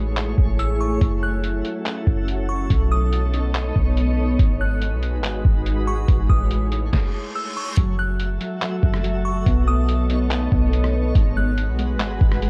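A crystalline, warbling synth bell carries the melody high above this melancholic, hazy half-time cloud-rap fragment, colored by chorus, tremolo and tape echo over an ethereal FM pad that pumps against the beat. A boomy, sine-like 808 bass and a muffled, pitched-down sampler kit with a thumpy kick, fat snare, hi-hat, rim clicks and handclaps sit up front, while a twinkling granular texture shimmers in the background. After a stop broken by an electronic reverse cymbal at 7.1 seconds, a dark, clean electric guitar joins with echoing arpeggios at 7.8 seconds, all captured in a dry, gritty cassette sound.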